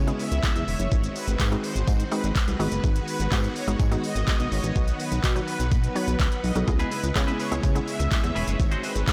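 This energetic, confident dance-pop excerpt opens with a woody, warbling FM synth pluck, shimmering string-machine violins and a glossy, dark chorused synth bass, all pumping against the sidechain from the first beat. A layered electronic pop kit arrives at 0.1 seconds, with a knocking kick, crisp hi-hats, handclaps and shaker sitting up front beside the bass. A jingly, close tambourine adds a very quiet sparkle underneath. The harmony cycles through C#m7, G#7, G#m7 and B. At 6.7 seconds a clean, twangy twelve-string electric guitar enters with a picked riff carrying a subtle chorus. Light reverb surrounds the parts, and the whole recording sounds blown-out and overdriven.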